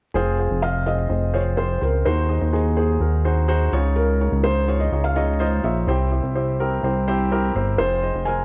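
A straight 4/4 pulse at 126 BPM drives this short pop passage in F minor, tuned to A4 = 441 Hz and cut from a longer piece. A felt-muted upright piano carries the melody between Ab4 and Ab5 with a soft, boxy, intimate tone, its thin felt and audible action noise close at hand. Underneath, a chorused synth bass sits up front with a retro, glossy sheen, blending pulse, sawtooth and triangle waves with pulse-width modulation, ring modulation and a saturated filter pluck that sustains its notes. From 0.2 s a polished, present baby grand piano fills in the accompaniment across C3 to Eb5. The harmony moves from Fm through Ab7/Eb and Dbadd9 to C before returning to Fm at 7.8 s, giving the music a dramatic, bittersweet arc. A moderate spring reverb and vinyl crackle frame the dark, warm production.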